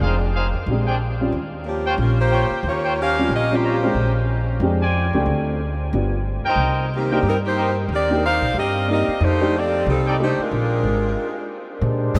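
Joyful and swinging, this short big-band jazz clip moves at a brisk 183 BPM in 4/4, with a light swing on the eighth notes and a Bb mixolydian flavor. The saxophone section carries the melody up front with vibrato and a soft attack, playing from the start to 4.2 seconds and returning at 7.0 seconds, while the trumpet section adds vintage-toned stabs with light vibrato. The pizzicato upright bass, woody and sitting on steel strings, plays through the whole clip close to the listener, and the baby grand piano fills in natural-sounding accompaniment from 0.7 seconds. After a stop near the end, a punchy trombone section with a smooth top enters at 11.8 seconds with sustained chords. A huge ambient reverb wraps the band in a vast, echoing space, as the harmony moves through rich extended chords like Bb13, Eb13 and F13.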